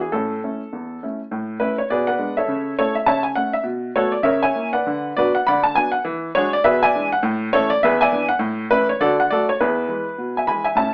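Swinging and playful, this brief stride piano excerpt in A major moves at a brisk 203 BPM with a 61% swing on the eighths. A clear, woody upright piano plays alone from 0.0 to 10.9 seconds, spanning E2 to B5, sitting up front with an intimate, natural tone, short sustain and audible action noise. A moderate club reverb surrounds it, and the whole thing is colored by an AM-radio sound, as the harmony passes through diminished and slash chords before settling into a closing A–E7–A–D–E turnaround.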